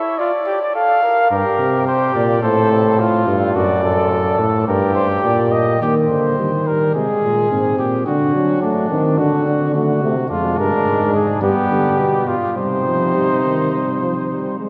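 In a straight 4/4, this solemn, contemplative classical canzona for brass, cut from a longer piece, opens with a mellow cornet melody sung with vibrato over a dark trumpet second line, joined at 1.3 seconds by an up-front bass trombone bass with a smooth top and at 5.8 seconds by a lightly vibrato euphonium accompaniment, while the cornet drops out as the euphonium enters and returns at 10.3 seconds, the ensemble set in a wet cathedral reverb.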